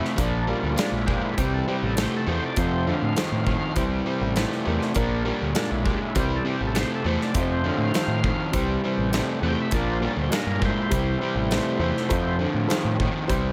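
Sunny and driving, this classic rock passage is cut from a longer piece and rolls along in a straight 4/4 over a repeating cycle of Bb, C and F chords. Two overdriven guitars play the riff in the low register: a semi-hollow guitar sits up front with a warm, hollow-body tone, while a raw, lo-fi garage guitar sits in the background. An overdriven picked electric bass joins at 0.2 s with a dark, round, amped sound. A big acoustic drum kit with a punchy kick, medium-tuned snare and hi-hat drives the beat. Behind them, a thick, gritty tonewheel organ holds sustained chords with audible key click through a slow rotary speaker. A mellow, woody upright piano, slightly detuned and vintage, with audible action noise, adds quiet accompaniment, all in a small room with light reverb.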